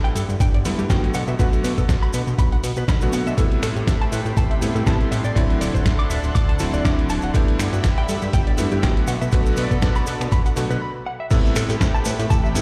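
The mix is dry, played back on a big sound system in a bare room whose large studio reverb lends it space. This sensual, sleek nu-disco cut, taken from a longer piece, rides a swung 4/4 groove built on a thumpy, compressed electronic kick sitting up front and a dusty, sampler-style kit of medium-tuned snare, hi-hat, shaker, finger snaps and crash cymbal. A fat, detuned sawtooth bass with a filter sweep anchors the low end, while a bright, clangy electric grand piano with tape echo supplies the accompaniment and a clean, direct-recorded electric guitar plays a picked riff coloured by chorus, 12-bit sampler grit and tape echo. A cabasa with tube shaker and group handclap sits in the background, and from 3.4 s a thick, warbling unison pad with slow attack, chorus and sidechain pumping adds sustained chords over a G6, Bm7, Am9 and D7 cycle. A brief break arrives at 10.8 s before the drop lands on Am9 at 11.3 s.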